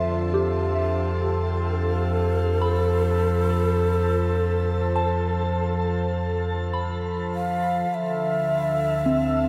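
Bathed in a wet shimmer reverb, this serene, reflective ambient excerpt sets a breathy, close-miked shakuhachi melody with diffuse delay over a warbly, nostalgic tape-like pad, soft FM synth bell arpeggios touched by chorus and phaser, a deep, round sub bass, a very quiet organ-like drone that stops at 8.0 seconds, and a lush bowed violin section fading out in the background, as the harmony moves from F to Dmadd9 at 7.9 seconds.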